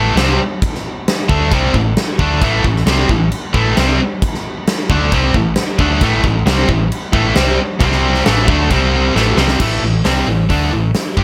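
A straight 4/4 pulse at 134 BPM drives this menacing, heavy hard rock piece in A minor, cut from a longer performance. Two guitars carry the riff together from the first moment: an up-front overdriven electric guitar with a bright, picked edge, and a high-gain distorted guitar whose bright, picked tone adds a second layer alongside it. A hollow-body short-scale electric bass, fingered and amped, holds down the low end with a dark, round, punchy sound. At 0.2 seconds a huge arena drum kit arrives with an acoustic, natural big-room character, pairing a medium-tuned snare and a punchy kick with crash cymbal and hi-hat, sitting up front in the mix. The harmony rests on A minor before moving through C5 and A5 power chords around 7.8 seconds, and a drum fill at 9.2 seconds leads into a new section at 9.6 seconds, all inside a small room ambience.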